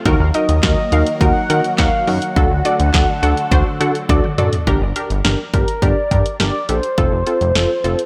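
Synth-pop with a bright, nostalgic mood, cut from a longer piece, driven by a dry, punchy analog drum machine of kick, snare, hi-hat, handclaps and toms, with a drum fill from 4.1 to 4.7 seconds, under a glossy, nasal chorused synth bass sitting up front. A funky polysynth comp of detuned sawtooth and square waves plays throughout, a swirling phased analog pad holds sustained chords in the background until 4.6 seconds, and a warbly, lo-fi pluck with a dusty noise layer adds a quiet second line until 4.5 seconds. Over it all a round, horn-like synth lead carries the melody with vibrato, chorus and dub echo, in an echo-heavy mix with light reverb as the chords move from Ebm and D to Gm and F.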